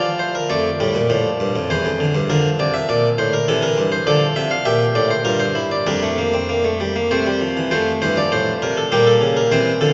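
A lone harpsichord, airy and round with a plucked, single-strung French-style tone, sits up front and spells out a lively, joyful four-voice fugue in a baroque classical style at 100 BPM in 3/4. The writing starts in D minor and turns toward F major at 4.1 s, with a new section opening on F at 7.7 s and a B-flat minor sixth chord arriving at 8.9 s. A long cathedral reverb of about 4.5 seconds blooms around the instrument, and the recording's softened top end gives this short cut from a longer piece a mellow, hall-like glow.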